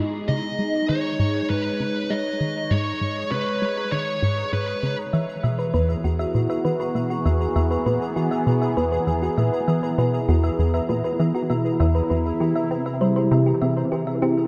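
A straight 4/4 pulse at 99 BPM drives this cosmic, hypnotic stretch of sequencer-driven ambient space music, cut from a longer piece and moving from G#m to Eadd9 and then C7. Up front, a punchy, funky analog bass plays a plucky, detuned riff with a filter sweep running through it, colored by analog chorus and tape echo. Above it, a bright, evolving pad with a resonant, wave-folded edge holds sustained chords through chorus and phaser. A soft, tempo-synced gated texture pulses quietly in the background, fading in over the whole passage with chorus and its own reverb. A dark, high-gain electric guitar carries a distorted, picked melody from 0.3 to 5.0 seconds, and at 5.1 seconds a round, tine-like FM pluck, much like a thumb piano, takes over with gentle arpeggios through chorus and tape echo. The echo-heavy mix sits in a moderate plate reverb with a long tail.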